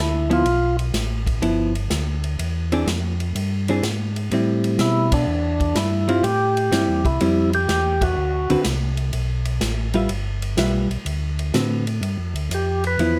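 Soul jazz organ trio with a bluesy, greasy swing at 124 BPM in G mixolydian, where a mellow, round tonewheel organ bass on slow rotary speaker anchors chords like G13, E7alt and D13, a dark, compressed hollow-body guitar comps up front from 0.3 seconds, an airy big-band kit with dark cymbals and a punchy kick swings beneath, and a percussive tonewheel organ with key click states brief melody phrases before taking a short solo at 12.0 seconds, all in a moderate club reverb, in this cut from a longer piece.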